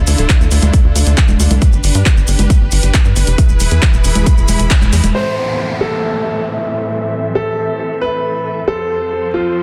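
A dense, heavily limited modern mix with light digital ambience carries this driving, emotional uplifting trance excerpt at 136 BPM in A minor. Clear bowed strings with vibrato hold sidechain-pumped chords throughout, under a filter sweep from 5.1 seconds. A tight sawtooth sequencer bass and a punchy, tape-warm electronic kick drive the opening, alongside a layered dance kit of congas, handclaps and hi-hat and grainy maracas in the background. A band accent lands at 4.7 seconds, and then an intimate, boxy grand piano with long sustain and digital delay takes a second line beside an electronic downlifter.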